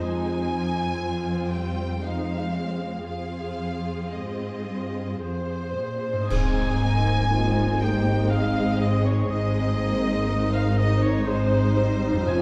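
A rich, focused violin section carries the melody in this hopeful, moving cinematic film-score excerpt in Ab major, drifting in a rubato 3/4 at 53-62 BPM over a soft-attack second violin line, expressive violas with portamento, bright ringing harp arpeggios and a dark cello bass, while a cymbal swell with clash cymbals and concert bass drum arrives at 3.1 s, a distant oboe joins at 5.2 s, and at 6.3 s a mellow clarinet, a tight French horn section holding sustained chords and a lush double bass section enter with a band accent, within a stone-room reverb.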